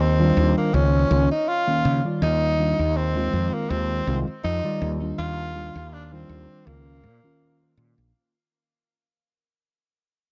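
Woozy and faded, this vaporwave fragment drifts at 81 BPM with a light swing over Ebmaj9, Db69 and Fm7 chords, fading out from 0.2 seconds onward. A breathy, up-front tenor saxophone carries the jazz-style solo melody with vibrato, subtone and scooped notes, roughened by vintage 12-bit sampler grit and tape echo, while a round, dark fretless bass with tube saturation sits close underneath. A mellow tine electric piano with subtle chorus fills in the harmony, all captured in a small, dry room with a gritty cassette-tape haze.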